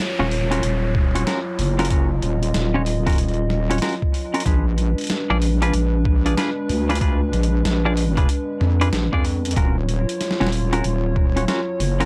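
A dark, detuned analog pad with chorus and sidechain pumping opens this playful, swaggering glitch hop excerpt, alongside a gritty, pitched-down sampler-style drum kit of hi-hat and snare, while an electronic downlifter sits in the background until 4.5 seconds. A heavy, saturated wobble bass arrives up front at 0.2 seconds, together with clean, fingered stabs from a hollow-body electric guitar carrying analog delay and its own pumping, and a thumpy, compressed kick joins at 0.9 seconds. The swung groove moves from Ebm9 to Bb7b9 and back, over a dry, gritty hardware sound.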